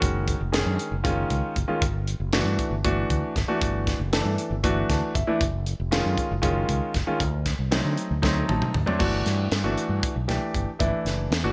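Electric jazz fusion in a funky, soaring 7/8 at 234 BPM, cut from a longer piece, where a clear, polished baby grand piano comps up front over suspended chords from F#sus2 to D7b9, a dark, round fretless electric bass anchors the low end, and a tight funk drum kit with a high-tuned snare and gated reverb joins the piano in a fill at 8.2 seconds before the music shifts to a new section on Gmaj7sus2 at 9.0 seconds, all within a bright 1980s-style digital production.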